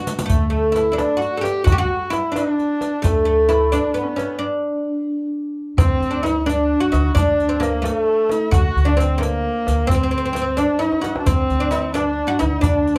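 A six-eight pulse with a straight feel drives this passionate, stately Persian modal ensemble piece, cut from a longer performance. Up front, a fretless, plectrum-plucked oud with double strings carries the woody, deep-toned melody, while a single bowed kamancheh adds a rich, smooth second line close by, full of vibrato and portamento. Underneath, a pizzicato upright bass with gut strings holds a thumpy low anchor, the tombak sits in the background with soft hands, and a riq adds dark jingles in a close, dry sound. The ensemble halts from 4.4 s, then at 5.8 s the mode shifts as the second section begins, and a drum fill arrives at 10.8 s. The whole group is heard from further back in a wet, small room.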